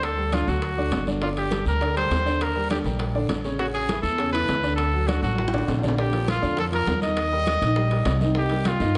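This salsa excerpt moves at a driving, passionate 202 BPM in straight 4/4, taken from a longer piece. A clear, punchy trumpet carries the solo melody up front with scooped notes and a vintage pop-style edge, while a bright, brilliant upright piano supplies polished accompaniment across a broad range. Underneath, a woody, thumpy pizzicato upright bass with gut strings sits dark and prominent, giving the groove its weight. In the background, ringing congas played with soft hands, metal-shell timbales and a raspy, saturated guiro fill out the percussion, joined by tight, high-tuned bongos at a very low level. The harmony moves from a D-centred progression through Gmadd9 and Ebmaj7, and a drum fill from 5.2 to 6.0 seconds leads into a new section built on Bb, Eb and Cm7. The whole band sits in a moderate large-studio reverb, with a rounded top end that softens the highest frequencies.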